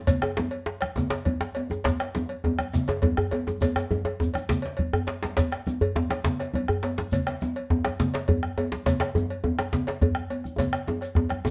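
A rolling 12/8 pulse with a straight feel drives this festive West African drum ensemble, and the groove speeds up steadily across its short span, cut from a longer piece. Up front, a round, close bombo anchors the low end, joined by a cracking, tight djembe played dry and close. A second djembe adds a deep, vintage, band-limited tone struck with hard hands, while bright congas with a thin skin and medium tuning sit nearby. A metallic, dry cowbell and a grainy, mellow shekere, heard in a small room, fill out the texture. Drum fills break through at 4.8 seconds and again at 10.6 seconds, and the studio reverb gives the driving ensemble a lively sense of space.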